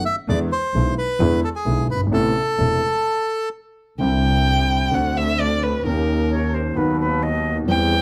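A rubato 4/4 tango at 130 BPM in A minor, dramatic and melancholic and cut from a longer piece: a reedy, dark bandoneon carries the melody up front over an intimate, vintage grand piano with audible action noise and deep bass, while a distant bowed double bass with vibrato and portamento enters at 0.3 seconds. After a stop at 3.1 seconds, a bowed violin takes a solo from 4.0 seconds, expressive and smooth on top, and an airy, metallic flute adds a crisp, straight-toned second line briefly near the close, in a moderate studio reverb.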